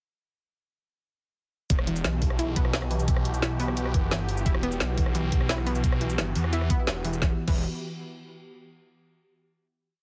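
A straight 4/4 pulse at 174 BPM drives this dark, mechanical technical drum and bass piece in E minor, where an overdriven, knocking electronic kick and a tight kit of woody snare, bright hats, rim clicks, shaker and crash kick in at 1.7 seconds under an up-front, swirling phased saw bass of chopped phrases, an airy, evolving resonant pad with sidechain pumping, and a round analog pluck whose 6-step sequence drifts against the bar through tape echo, all pressed into a dry, heavily compressed radio sound that ends on a final chord from 7.2 seconds.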